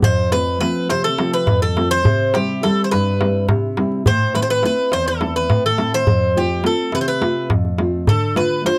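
Moody and brooding, this short Greek folk passage from a longer piece moves in a straight 7/8 feel, tuned slightly sharp to A4 = 445 Hz. A bright, metallic bouzouki carries the melody up front with picked double strings and some octave doubling, while a full-bodied nylon-string guitar plays thumb-plucked accompaniment with audible finger squeak, over a crisp metal-shell darbuka, all three playing throughout. The close 1970s-style studio sound carries a light reverb as the harmony moves from F to C, A minor, back to F and on to D minor at 8.1 seconds.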